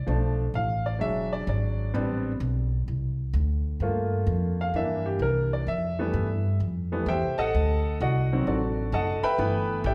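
A moderate recital-hall reverb with a 1.5-second tail surrounds this joyful, energetic big band swing excerpt at 129 BPM in G major, where a bright, brilliant upright piano with long sustain solos up front for the full 9.9 seconds over a woody, pizzicato upright bass with steel strings, running through chords from Bm7b5 and E7 to Fmaj9#11 and D7b9 before settling on G6.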